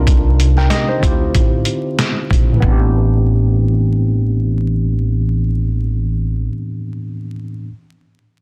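Gritty and moody, this short boom-bap hip-hop cut sits at 94 BPM in A minor with a swung 16th-note feel. A worn, slightly out-of-tune tine electric piano carries the chords through overdrive, cassette tape and a low-pass filter, with a filter sweep over its opening 2.6 seconds as the harmony moves from Cm11 to Dm11 before landing on Am11. Beneath it, a pizzicato upright bass with a woody, growly tone on steel strings holds the low end until 6.5 seconds. A pitched-down, sampler-style trip hop drum kit, with a thumpy kick, medium-tuned snare and hi-hat, sits up front but drops out at 2.8 seconds, leaving bass and piano to carry on. The sound is dry and dense, heavily limited, with vinyl crackle giving the fragment a dusty edge.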